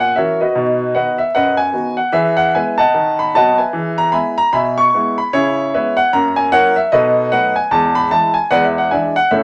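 A swung 4/4 pulse at 151 BPM drives this short stride piano excerpt, its eighth notes leaning into a light shuffle that gives the jazz an exuberant, playful bounce. A lone upright piano carries everything from 0.0 to 9.4 s, ranging from E2 up to C#6, with a woody, polished tone that sits up front and rings with long sustain. The harmony moves briskly through F#7/A#, B and E before settling into E major at 5.3 s, where a C#m7, F#7, B7 turnaround resolves to E and then tips toward E7. Moderate studio reverb gives the instrument a sense of room, while a layer of vinyl crackle lends the sound a nostalgic surface. Cut from a longer piece, the passage feels like a cheerful snapshot of a larger performance.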